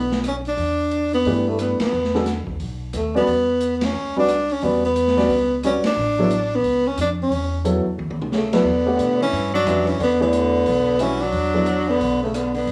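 Modal jazz with a searching, hypnotic swing, cut from a longer piece: a close-miked tenor saxophone carries the melody up front with a soft attack, vibrato and a cassette-tape grain. Beneath it sit a woody, growly pizzicato upright bass and a distant, roomy big-band drum kit with dark cymbals, a boomy kick and the same tape tint. An intimate baby grand piano with audible action noise and long sustain comps from 1.3 seconds, the band punctuates with ensemble accents, and a bright alto saxophone joins as a second line at 8.3 seconds after a short drum fill, all set in light reverb and small-room ambience.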